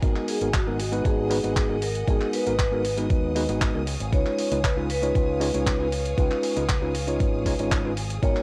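A bell-like tine electric piano opens this brief nu-disco excerpt at 117 BPM in a straight 4/4. It enters together with a thumpy, gritty electronic kick drum placed up front, a dusty soul sampler-style kit of handclaps and hi-hat re-recorded in a large room, and a bright fingered electric bass run through an envelope filter. Behind them, a lush, bowed symphonic string section holds sustained chords with vibrato and a biting edge, pumping under sidechain compression. At 0.3 seconds a vibraphone played with medium mallets, motor off, takes the melody, its metallic ringing tone trailed by tape echo. The harmony moves from G#m7 to C#7 at 3.9 seconds, giving a sensual, cosmic mood. Light reverb and the character of a home cassette recording tint the whole clip.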